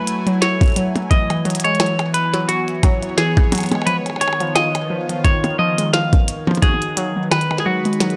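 A swung 16th-note groove at 87 BPM in 4/4 drives this eerie, intricate IDM excerpt: a glitchy electronic kit of clicky hats, a tiny snare and percussion blips, joined at 0.6 s by a thumpy, pitched-up, sampler-style kick sitting up front until 6.8 s, with a drum fill at 8.0 s. Over chords moving from F#m9 through E6 and C#9 to G#m7, a bright, clean semi-hollow electric guitar carries the melody with vintage 12-bit grit, while a detuned, dusty pluck warbles through lo-fi arpeggios coloured by chorus, phaser, tape echo and a filter sweep. Alongside them, a swirling, mellow sawtooth pad holds slow-attack chords through phaser and chorus, all captured in a dry, gritty hardware recording with light reverb.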